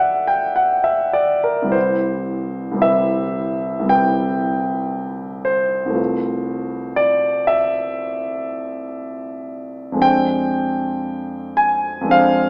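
A clear, polished grand piano opens on a D9 chord and moves through Cmaj7, Fmaj7#11/C and Fm6 in this luminous, dreamy impressionist solo piece, played with rubato at a slow 51-61 BPM in 4/4, its up-front tone spanning C2 to Ab5 and sitting in a moderate recital hall reverb with a small-speaker quality across a 12.5-second cut from a longer work.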